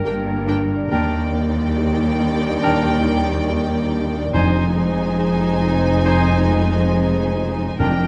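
A dark, reverberant scoring-stage sound frames this moving, bittersweet cinematic excerpt in a rubato 4/4, where a lush violin section carries the melody over a second violin line, distant violas, focused cellos and deep double basses, while a bright oboe, an airy flute and a soft clarinet trace quiet second lines, a felt-muted upright piano with audible action noise murmurs in the background, a mellow French horn section holds sustained chords, a ringing harp adds arpeggios, and close, dry timpani struck with hard mallets enter at 4.3 s as the harmony moves from Gm through Ebmaj7 to Fm7.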